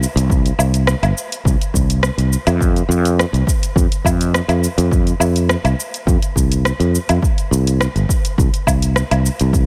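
A growly, up-front fretless electric bass sustains low notes from the start alongside an overdriven deep house kit of hi-hat, rim click, shaker and woodblock, with a punchy, overdriven electronic kick arriving at 0.3 seconds. This smooth sunset chillout excerpt moves at 104 BPM in a straight 4/4, tuned to A4 = 441 Hz. A light reverb colours the warm mood, and the layered, produced drums join the bass in the mix.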